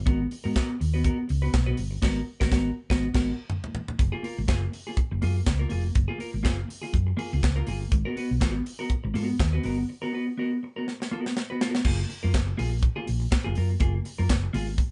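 A dark, round hollow-body short-scale bass, fingered and amped with tube saturation, opens this sultry, driving disco cut, joined almost at once by a tight funk drum kit and a clean electric guitar. The swung sixteenth-note feel keeps things moving as the harmony shifts between G#m9 and F#maj9 chords. The drums are acoustic, dry, airy and polished, with a high-tuned snare, a tight kick, hi-hat, handclaps, toms and crash cymbal, and they sit up front with the bass. The compressed, picked guitar adds a warm accompaniment, and the whole band hits a shared accent alongside a drum fill from 2.0 to 4.0 seconds. A break arrives at 9.9 seconds and is capped by another fill before the final stretch, all captured as a live band in one room with light reverb and a soft top end.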